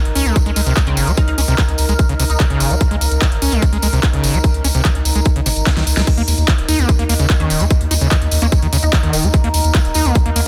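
A tight, overdriven electronic kick drives this straight 4/4, hypnotic psychedelic trance excerpt alongside an overdriven big-room dance kit with a huge snare, metallic hi-hats, handclaps and crash cymbal, a close, jingly acoustic tambourine, and a drum fill midway. A round, deep analog bass sits up front beneath a screaming acid line that is squelchy and aggressive, carrying distortion, chorus, 12-bit sampler grit, dub echo and sidechain pumping, while an overtone-sweeping, detuned drone holds sustained chords with chorus, its own reverb and pumping. A juicy, phased blip pluck surfaces in the background from 0.9 to 2.9 seconds and again from 7.4 seconds, with cassette tape colour and tape echo, all within a dense, heavily limited modern master.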